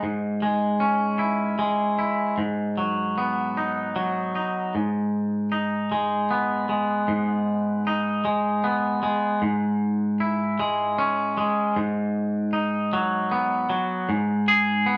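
This is a cinematic, melancholic rock piece in triple metre with a straight feel, cut from a longer performance. A single twangy electric guitar plays alone throughout, its clean, fingered tone sitting up front with a compressed warmth. The part moves between chords built over a G# bass, shifting from C#m/G# to B/G# before settling on G#m. From 4.7 seconds the passage turns into a build-up that runs to 14.1 seconds, tracing the same chord cycle again before landing back on G#m. The recording captures a band playing live in one room, with moderate studio reverb giving the guitar a natural sense of space.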